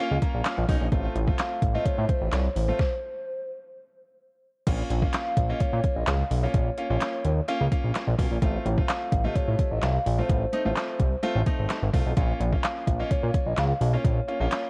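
Dance-pop at 128 BPM in Bb harmonic minor, confident yet bittersweet, this cut from a longer piece opens with a brilliant grand piano fill, while a hollow, woody clarinet-like synth lead with vibrato carries the melody through chorus and digital delay. A fat, nasal sawtooth bass with a saturated filter pluck sits up front beside a smooth R&B kit of soft kick, deep snare, metallic hats, handclaps and crash, with bass and piano both pumping against the sidechain, until the arrangement breaks off from 2.8 to 4.7 seconds before the Bbm to F/A progression returns. The mix is dry and carries the warbling pitch drift of worn cassette tape.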